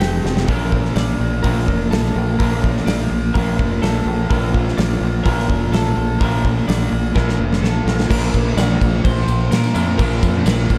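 Blissful, dreamy shoegaze rock opens with a gated 80s drum kit, up front with bright cymbals and a tight kick, beside a punchy, overdriven fingered bass, a slightly broken-up twangy guitar riff trailing reverse reverb, and a dark fuzz guitar riff with lush chorus set in the background. Above them a clean, compressed twelve-string electric guitar plays bright arpeggios through subtle chorus and digital delay, all wrapped in a small-room ambience and a dark production. After a drum fill from 7.1 to 8.1 seconds the piece moves into a new section, where a very quiet, jingly tambourine joins at 8.2 seconds.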